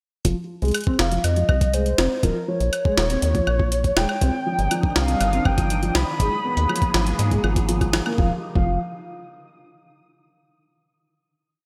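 IDM with a glitchy, cerebral mood, moving at 121 BPM in a straight 4/4 over a brief chord cycle of F7(no3), Ebsus2, Cm9 and Abm9, tuned to A4 = 439 Hz. From 0.2 s a gritty, overdriven, pitched-up kick thumps out a broken pattern, while a jungle sampler-style kit scatters a high-tuned snare, closed hat and woodblock through a glitched, ever-changing beat under gated reverb. A rubbery, resonant square-wave acid bass sits deep and up front with a syncopated riff of fast, decaying filter plucks, and a felt-muted upright piano, soft and vintage behind chorus, low-pass filtering and delay, repeats a 9-step arpeggio loop that drifts against the bar. A warbling, nostalgic lead enters at 1.0 s with a free, vibrato-laden melody through chorus and digital delay, and from 4.2 s a swirling, detuned sawtooth pad swells in under phaser, soon joined by a faint, flickering granular texture holding a high note in the background. 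The bright, 1980s-style digital production wraps the groove in a lush hall reverb before it gives way at 8.2 s to a final chord.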